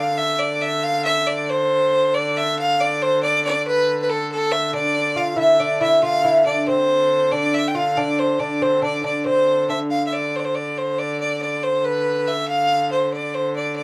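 A biting fiddle with light vibrato carries the melody of this ancient, mysterious medieval dance in 6/8, over a nasal, earthy hurdy-gurdy drone that sounds from the first second. At 4.7 seconds a delicate, fingerpicked lute on gut strings adds a second line beneath the fiddle, then drops out at 9.9 seconds as the piece moves into a new section. The fiddle sits up front in a dry, close 1970s-style studio sound with light reverb, in a short piece cut from a longer performance.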